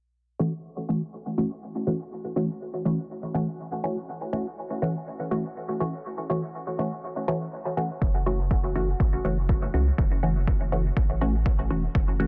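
Dub techno with a deep, meditative mood, this short section is cut from a longer piece and rests on a single F#m7 chord in straight 4/4 time. A filtered dub chord stab opens at 0.4 seconds, its muted, detuned sawtooth and square-wave tone treated with phaser, cassette tape coloring, sidechain pumping and dub echo while a filter sweep runs through the whole passage. At 8.0 seconds a round, dark analog bass arrives, built from triangle and sine waves with a quick filter pluck that sustains and pumps from the sidechain. A punchy, layered electronic kick drum enters at the same moment and sits up front, re-recorded in a small room. The mix is dry and dense, with a heavily limited modern master and a low-pass filter shading the overall sound.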